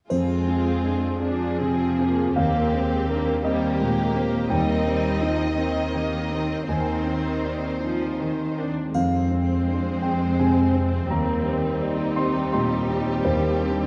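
Up front with a deep bass, a concert grand piano accompanies this sorrowful, moving orchestral film cue in a rubato 6/8 with an uneven pulse, cut from a longer piece. Around it, a lush, smooth violin section sings a second line and a clear, focused viola section adds accompaniment, while a rich cello section holds the bass, a mellow, ringing harp plays arpeggios in the background and a faint triangle enters at 0.1 and again at 8.9 seconds. The sound sits in a wet concert hall reverb, colored by worn, warbling old cassette tape with drifting pitch.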